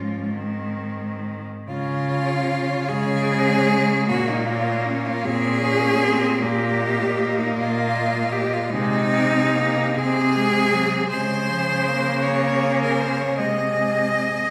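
Classical music for a cello ensemble, this lyrical passage, cut from a longer piece, feels tender and warm, moving in a slow 6/8 with uneven beats and free rubato. Four bowed cellos, each a single player with vibrato, sound together throughout its 14.5 seconds. The melody cello, focused with a smooth top, sits in the background. A close, up-front second line carries more presence than the tune itself, and a smooth, even accompaniment cello fills the middle. Beneath them, an expressive bass cello with portamento sounds distant yet still up front. A short opening gives way at 1.7 seconds to a longer passage whose gentle harmonies settle into a rich, reverberant church or concert-hall space.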